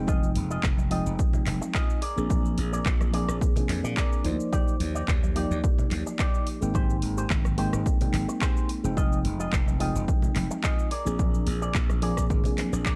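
A punchy, up-front electronic kick drives this sunny, feel-good nu-disco excerpt at 108 BPM with a light 16th-note swing, alongside a growly, bright slap bass, a house kit of warm hi-hats, handclaps, rim clicks and shaker, faint band-limited congas, a twangy, clean envelope-filtered guitar riff with subtle chorus and analog delay, and a mellow, reedy electric piano pumping through phaser and delay over Fm7, Bb7, Ebmaj7 and Abmaj7 chords, all set in digital ambience.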